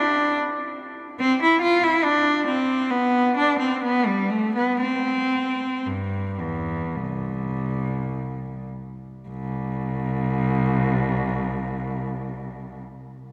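Classical, baroque-style suite movement for unaccompanied cello in C major, radiant and dance-like, moving in a free, rubato 4/4 between 48 and 74 BPM and slowing down through its first 9.3 seconds. A single bowed cello sits up front, rich and focused with vibrato and a smooth top, ranging from C2 to F4 and playing alone until 12.8 seconds. A wet cathedral reverb with a long 4.2-second tail surrounds the instrument in this short cut from a longer piece.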